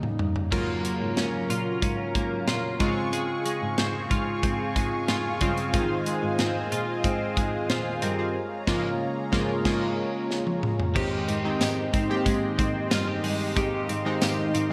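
1980s-style pop with a glossy, nostalgic mood, opening on a drum fill from an up-front studio kit with a punchy kick and gated reverb, alongside chorused retro synth keys and a bowed cello bass marked by vibrato and portamento. From 0.5 seconds, a lush, detuned unison pad, a clean, twangy twelve-string electric guitar riff with analog chorus and delay, and round, mellow synth brass stabs join in. The brass drops out at 9.9 seconds, in the midst of a band accent that, together with a second drum fill, carries the music into a new section at 11.0 seconds, all within a bright digital production and moderate plate reverb.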